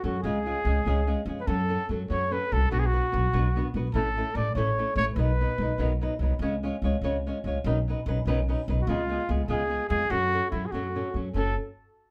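Mexican folk mariachi in 6/8 at 97 BPM in F# minor, this romantic, festive cut from a longer piece moves through chords such as F#m, Bm, A and C#7. A mellow trumpet sings the solo melody with soft attack and classical vibrato, pausing at 5.9 seconds and returning at 8.8 seconds, while a warm, fingerpicked flamenco guitar and a woody, thumpy pizzicato upright bass play throughout. The parts sit up front, yet a wet small-room ambience places the listener further back in the space.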